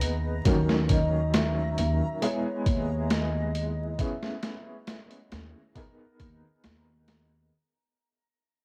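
A gritty, sampler-style boom bap kit with a thumpy kick and high-tuned snare sits up front in this brooding, hypnotic trip hop excerpt. Alongside it from the start are a woody pizzicato upright bass with tube saturation and a soft, felt-muted upright piano coloured by tremolo and vintage 12-bit sampler character. A pure, breathy sine lead with chorus, vibrato and tape echo carries the melody until 4.9 seconds, while a reversed, detuned swelling texture glimmers in the background, and the dry cassette home recording, dusted with vinyl crackle, fades out across its 7.5 seconds.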